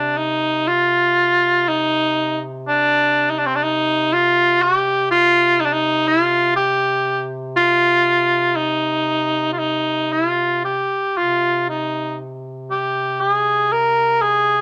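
A warm cor anglais carries the melody up front, singing in a classical style with a light vibrato across a range from C4 to Bb4. Beneath it, a mellow duduk holds a low drone on C3, played in a folk manner and sitting much further back in the mix. This is a solemn, mournful Caucasian folk lament in 3/4, and its rubato feel lets the line breathe freely. Both instruments sound together from 0.0 to 14.6 seconds, with each keeping a smooth top to its tone. A light reverb adds a touch of space to this brief passage, which is cut from a longer piece.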